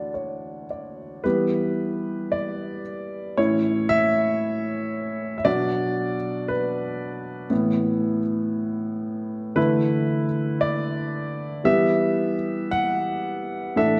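Dark and gently reverberant, as if heard on a moderate scoring stage, this tender, nostalgic Celtic folk fragment centres on a woody, intimate upright piano placed up front, its audible action noise and long sustain carrying a brief opening fill before it plays alone from 1.2 seconds through a rubato progression that moves from Em to A, Bm, Asus2 and Dsus2 before returning to Em.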